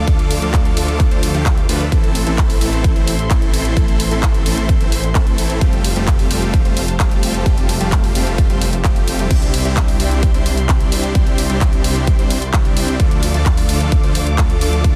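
Festival progressive house with an anthemic, triumphant mood, cut from a longer piece, where a punchy, layered electronic kick sits up front beneath a big-room dance kit of crash cymbal, handclaps and hi-hat, while huge, bright detuned supersaw chords with digital delay carry the riff over a thick, saturated detuned saw bass treated with chorus, and a bowed symphonic string section with vibrato sustains chords in the background, the supersaws, bass and strings pumping with sidechain through Dm, Am, Fadd9 and Cadd9 in a dense, heavily limited modern master with digital ambience.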